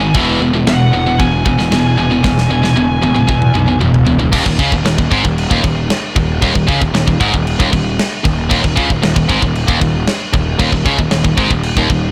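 A blown-out, overdriven small-room recording opens this aggressive heavy metal cut at 115 BPM, where a high-gain lead guitar melody and a very quiet second high-gain riff guitar sound alongside an up-front tight distorted guitar riff over E, growly fuzz bass, and a tight, acoustic drum kit with bright cymbals and a drum fill from 2.2 seconds, before the lead stops at 3.8 seconds and the chords and second guitar drop away at 4.3 seconds, leaving the riff, bass and drums to pound on.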